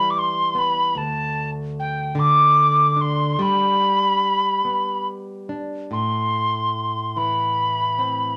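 Celtic slow air in a loose, rubato 6/8, this mournful, longing excerpt features an airy wooden whistle with a crisp, chiffy attack and expressive vibrato singing the melody up front, while a fingerpicked classical nylon-string guitar supplies soft accompaniment beneath, both set in a moderate club reverb.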